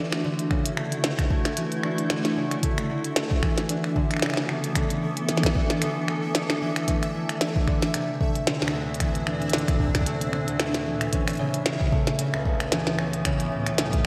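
A ringing acoustic concert harp stands out front, playing arpeggios through a digital delay in this playful, wistful IDM excerpt, set over a blurred, cloudy granular pad that holds sustained chords. Up-front glitchy drums with clicky hats, a tiny snare and finger snaps, tape-warm and also fed through delay, swing alongside a deep electronic kick that enters at 0.5 s, while a detuned, tempo-synced pulsing texture with chorus sits in the background. The harmony moves from E7sus4 to Bbmaj7 at 6.9 s and settles on Aadd9 at 11.1 s, with the mix set in a lush hall reverb and a bright 1980s-style digital sheen.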